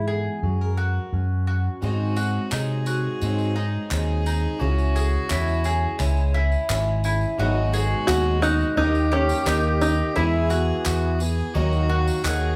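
A plunky, twangy open-back banjo carries the melody from 8.1 to 11.2 seconds in this wistful, bittersweet indie folk excerpt, which builds from a dark, full-bodied fingerpicked steel-string guitar, round mandolin arpeggios and a punchy, up-front fingered electric bass into a live-room band that adds a nasal, smooth fiddle line, a very quiet, mellow grand piano, a bright, shimmering twelve-string guitar and jingly tambourine from 1.8 seconds, crisp group handclaps soon after, and a reedy, breathing hand-pumped harmonium holding sustained chords from 7.4 seconds, all parts set in a moderate large-studio reverb.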